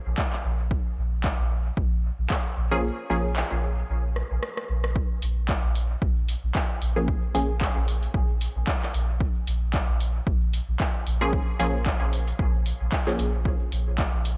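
Swung sixteenths in a steady 4/4 drive this nocturnal, deep dub techno excerpt: an overdriven, punchy layered kick sits up front, with handclaps, hi-hat and rim click from an analog drum machine that was re-recorded in a large room. The kick drops out at 2.8 seconds and a drum fill arrives at 4.2 seconds, while a round, mellow sub bass pumps under sidechain compression and holds a low Bb beneath a single minor seventh chord. Muted, detuned sawtooth chord stabs with chorus, phaser and dub echo flicker in briefly, then stretch longer from 11.2 seconds, all captured in a dry, gritty hardware sound.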